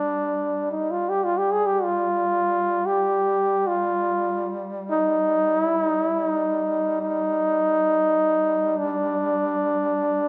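Caucasian folk lament in free time, mournful and longing, taken from a longer piece and lasting 10.3 seconds. A trombone with a straight mute carries the melody up front between D4 and Ab4, its bright, nasal tone smooth at the top and shaped in a classical style, while a close-miked duduk holds a G3 drone beneath it with vibrato and scooped notes in a folk manner. Both parts play throughout, set in a moderate recital hall reverb with a 1.7-second decay, and the trombone sits well above the duduk in level.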